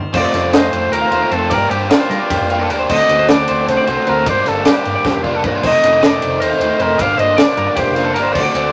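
A moderately ambient studio sound frames this restless, wistful excerpt of math rock and midwest emo, racing at 307 BPM in eighths through 7/8 over chords that move from F9sus4 through D7, Gm7 and F7sus4. An up-front, double-tracked overdriven guitar drives the riff above a dark, round hollow-body bass, while a bright, compressed twelve-string electric guitar picks arpeggios in the background and a barely audible twangy guitar sounds only until 1.5 seconds. A crisp, gritty acoustic kit with a high-tuned snare, punchy kick and pumping small-room tone throws in a fill at 5.0 seconds, and a distant, roomy trumpet carries the solo melody with light vibrato and scooped notes.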